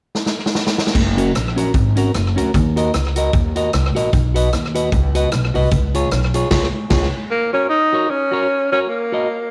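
A moderate plate reverb gives this studio recording a roomy sheen, with every part sitting up front. It is a cheerful, bouncy ska piece, cut from a longer work, in F# major at 151 BPM with a swung eighth-note feel, moving through F#, D#m, B and C#. A swinging big-band drum kit opens with a fill, its punchy kick, medium-tuned snare, rim clicks, hi-hat and crash all carrying a slapback echo. A woody, growly pizzicato upright bass and a clean, fingered semi-hollow electric guitar join the drums. The band hits an accent just before the drums and bass stop at 7.1 seconds, while the guitar carries on. At 7.3 seconds a breathy tenor saxophone takes the melody, intimate and whispered, with vibrato, scooped notes and a soft attack.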